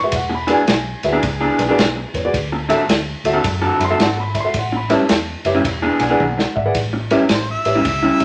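Set in a moderate studio room, this short cut from a longer electric blues shuffle has a vintage, lo-fi character and a swaggering, soulful mood. A dark concert grand piano opens as accompaniment, mellow and intimate with audible action noise and deep bass, and plays a fill from 5.6 seconds. An electric guitar through a small old amp carries the riff up front, its picked tone slightly broken-up and compressed, with spring reverb. Beneath it, a foam-muted fingered electric bass sounds round and punchy, while a vintage drum kit with a tight kick, a medium-tuned snare, ride cymbal and toms sits up front with a muffled, rolled-off top and adds a brief fill before the change. The progression moves through E7, D7 and A7. At 7.3 seconds a bright, close-miked harmonica enters for a jazz-style solo, overdriven, with light vibrato and scooped notes.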